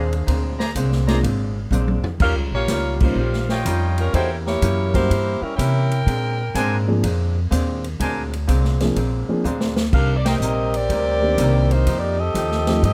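A warm, up-front saxophone section carries the melody with vibrato and a soft attack, pausing around 7.0 seconds before returning at 9.9, while a brilliant, tight trumpet section punches in with stabs until 10.4 seconds. Beneath them, a woody pizzicato upright bass, a clean hollow-body archtop guitar and a mellow baby grand piano with long sustain lay down the swinging harmony. A natural-sounding big-band drum kit with a punchy kick drives the groove with fills and band accents, giving this brassy, joyful jazz clip a close, detailed and dry sound.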